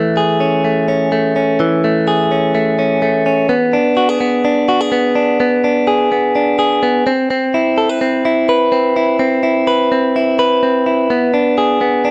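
A twangy, compressed clean electric guitar, picked and recorded direct, sits up front and plays alone through this bright, nostalgic indie pop excerpt at 126 BPM in a straight 4/4, moving from Amaj7 to Bm6 at 3.5 seconds and through a rootless Amadd9 before returning to Bm6, all in a rough home demo mix with light reverb and digital ambience.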